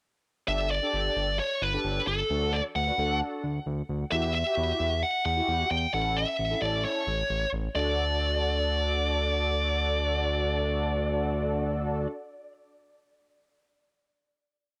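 From 0.5 seconds, an up-front, distorted high-gain lead guitar plays a dark, picked motif of call phrases over round, detuned synth brass in syncopated close-voiced chords with chorus, and a smooth, saturated synth bass pulsing in eighth notes. This short, upbeat yet wistful synth-pop piece moves at a straight 132 BPM in D major, tuned to A4 = 438 Hz, with analog delay trailing the guitar and a digital ambience over a dry, gritty sound. A pre-chorus moves through Gsus2, D, Emadd9 and A before landing on a final D chord at 7.8 seconds, and the parts stop together at 12.1 seconds.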